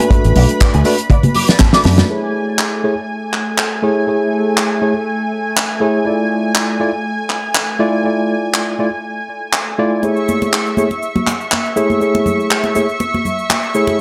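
A groovy, feel-good nu-disco excerpt at 121 BPM in A major opens with a twangy, envelope-filtered electric guitar riff carrying a filter sweep, alongside a dry, up-front 70s drum kit with a fat snare, hard-handed congas and cabasa, and a worn, slightly out-of-tune tine electric piano. A bright, fingered electric bass with its own envelope filter and a tight kick sit up front in the opening moments before both drop away by about 2.0 seconds, as a drum fill carries the groove into the next passage. From there the piano accompanies while a lush, airy unison pad with a soft attack and chorus holds sustained chords moving between Amaj7 and Dmadd9, both pumping against a sidechain while the piano's digital delay trails behind it. The handclaps, hi-hat, snare and toms keep a lightly swung sixteenth-note feel, and the hand percussion returns at 10.0 seconds to brighten the last stretch. A light reverb and small room ambience keep the sound close and intimate.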